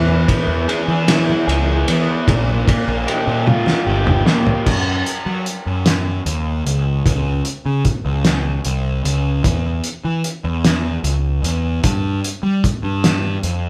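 Hypnotic and kaleidoscopic, this psychedelic rock excerpt moves in a slow, straight 6/8 with the feel of a band playing live together in one large studio room, wrapped in moderate reverb. A raw, overdriven garage guitar, picked and double-tracked, carries the riff up front for the opening stretch, stopping at 4.7 seconds, while very quiet, low-tuned congas with a thick-skinned, vintage, band-limited tone sit deep in the background until about 4.6 seconds. Underneath, a fuzz-soaked picked electric bass with a round, overdriven tone holds the low end through the whole passage. The cloth-damped drum kit sounds muffled and thuddy, with a fat snare, tight kick, dark cymbals and a gritty, saturated, rolled-off top, and a drum fill from 3.5 seconds leads into the second section. From there the bass and drums carry on alone through shifting harmony, including a stretch with chords dropping out before a minor chord and a suspended chord close the passage.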